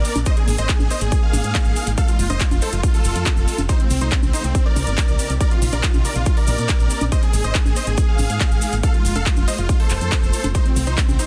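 Emotional and euphoric, this 140 BPM uplifting trance excerpt in straight 4/4 sets a huge, detuned supersaw melody with digital delay over a shimmering, ethereal pad with chorus and its own reverb, a round, dark FM bass, a punchy up-front electronic kick, a big-room kit of congas, handclaps and metallic hi-hats, and a grainy, very quiet cabasa, with sidechain pumping on the supersaw, pad, bass, hats and percussion as the chords cycle through Absus2, F, Cm and Bbadd9 in a dry, dense and heavily limited modern mix.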